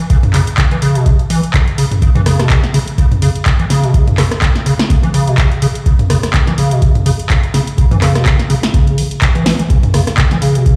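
A squelchy, resonant acid bass riff with chorus, delay and overdrive drives this raw acid house excerpt at 125 BPM in C# minor, pushed up front over a deep overdriven electronic kick and a punchy analog drum machine of handclaps, hi-hat, rim click, snare and toms, swung on the 16ths, with a drum fill at 9.5 seconds, all heard as if played through a big sound system in a bare room.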